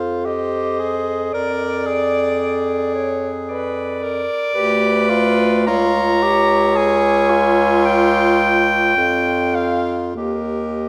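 A wet recital-hall reverb surrounds this brief, serene classical passage for single-reed quartet, which moves slowly at 48-58 BPM in 4/4 with a rubato feel over chords of F minor, F diminished seventh, D-flat and E-flat. Up front, a warm clarinet carries the lyrical melody, while a vintage-toned bass clarinet anchors the low end. Between them, a bright, close-miked alto saxophone sings a second line and the tenor saxophone fills in the accompaniment.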